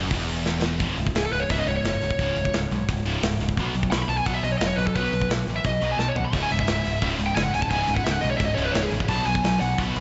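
Dark and aggressive, this heavy metal excerpt charges along at 174 BPM in C# minor, with a high-gain distorted guitar, a sludgy overdriven guitar and a double-tracked fuzz guitar playing riffs in the background over a growling, overdriven picked bass and a tight, up-front drum kit of hi-hat, kick, snare and toms. A short drum fill at 0.5 seconds launches a dark, high-gain lead guitar solo from 0.8 seconds, carried up front with slapback echo and delay, while the fuzz guitar drops out and returns at 6.3 seconds as the chords shift to C#m. Lush hall reverb gives the mix a big arena sound with a rolled-off top end.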